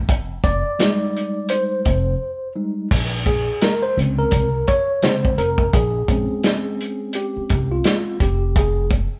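A live, single-room recording with light reverb frames this cool, nocturnal hip hop and jazz-hop excerpt, which moves with a swung sixteenth-note feel. Up front, a lo-fi vintage drum kit lays down a tight kick, a medium-tuned snare and hi-hat, with muffled, dark crash cymbals. Beneath it, a woody, thumpy pizzicato upright bass holds the low end, and a mellow, clean tine electric piano, heard through its built-in speakers, solos from 0.4 seconds. After a brief break at 2.2 seconds, the harmony shifts from Fm9 to Bbm9 at 2.9 seconds and settles on Fmadd9 near the close.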